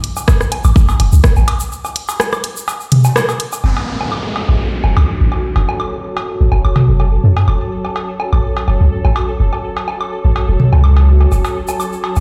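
A stone-room echo from a big sound system frames this sparse, hypnotic minimal techno excerpt in F# minor at 125 BPM, where a tight, tape-warmed electronic kick briefly joins garage kit hi-hat and rim click that sit up front until about 3.5 seconds, overdriven woodblock, cowbell and toms with delay run throughout beside a grainy tube shaker, a deep, punchy sine sub bass pumps under sidechain from 0.6 seconds, and after a downlifter at 3.6 seconds a blurred granular cloud pad and a bright, detuned, pulsing gated texture with chorus drift in.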